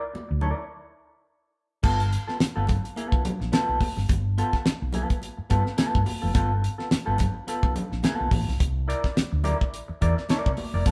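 Funk with a gritty, strutting swagger and a swung sixteenth-note feel, cut from a longer piece, where a twangy clean electric guitar with spring reverb sits up front over a round, hollow-toned fretless bass and ringing, high-tuned congas in the background. After a stop from 0.7 to 1.8 seconds, a dry, damped 70s drum kit with a fat snare and tight kick enters up front, and the band settles onto a G9 groove before returning to C9 at 8.6 seconds. The whole thing has the feel of a band playing live in one room with moderate studio reverb.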